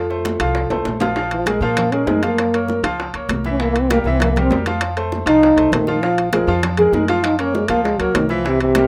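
Salsa at a brisk 197 BPM in Bb minor, this passionate, danceable clip is cut from a longer piece and captured in a rough home demo mix with a small room's moderate reverb. A mellow vibraphone struck with soft mallets, its motor off, opens with a brief metallic phrase that lasts only until 0.8 seconds, while a brilliant, up-front grand piano carries the accompaniment and a woody, thumpy pizzicato upright bass on gut strings anchors the low end. Bongos and congas sit in the background, the bongos round and low-tuned with a vintage, band-limited character, the congas high-tuned, thin-skinned and saturated under hard hands, while close, dry timbales with a ringing metal shell join in, and a drum fill arrives just before the trombone. At 1.3 seconds a dark trombone steps up front for a solo that runs to the end, played with scooped notes, light vibrato and a punchy, pop-style attack. The harmony moves through F, Bb5, Gbmaj7 and C7 before circling back.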